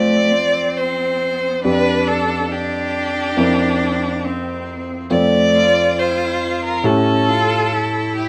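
Serene and warm, this short cut from a longer slow romantic movement for piano trio drifts in F major at 69 BPM in 4/4 with a flexible rubato feel, tuned to A4 = 438 Hz, as a focused, bowed violin sings the melody with vibrato, a smooth, even cello traces a second line beneath it, and a concert grand piano with deep bass sits up front in the accompaniment, all in a moderate studio ambience.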